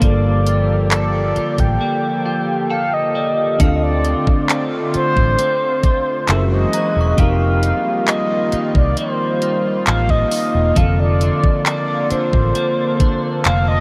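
A slow, straight 4/4 pulse at 67 BPM comes from an electronic trap kit with a knocking kick, bright hi-hats and handclaps, sitting up front with a tape-tinged character, while a dark, round, foam-muted fingered electric bass carries the low end beside it. This late-night, moody contemporary R&B piece in G minor is cut from a longer work. Its harmony moves from Gm9 through Dm7, F#9 and F9sus4 to Bbmaj7/F. A mellow, horn-like sawtooth synth lead sings the melody with a soft attack, vibrato, a filter sweep, chorus and analog delay. Beneath it, a mellow tine electric piano heard through its built-in speakers, a shimmering, retro pulse-width pad that pumps against the sidechain, and a clean, compressed electric guitar picking arpeggios through analog chorus and delay fill out the accompaniment. A break arrives at 1.8 seconds, with an electric piano fill entering at 2.3 seconds, and a very quiet, inharmonic FM chime rings with phaser and tremolo from 3.6 to 7.8 seconds, all drenched in a huge, dreamy ambient reverb.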